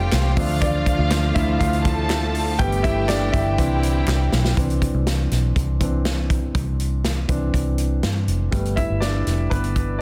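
A dense, heavily limited modern mix with light reverb and small-room ambience frames this uplifting, hopeful piano-driven pop excerpt in C major at 121 BPM, where a clear, open baby grand with long sustain carries the lead up front over a Dm, Gadd9 and Cadd9 progression. A round, dark, foam-muted electric bass and a punchy, natural acoustic drum kit drive the straight 4/4 groove, while a lush symphonic string section holds rich bowed chords in the background and a smooth-topped studio violin section adds a second line, with crisp group handclaps tucked behind them. The strings, violins and claps fall away by about 4.6 s as a drum fill plays, leaving piano, bass and drums to carry on to 10.0 s.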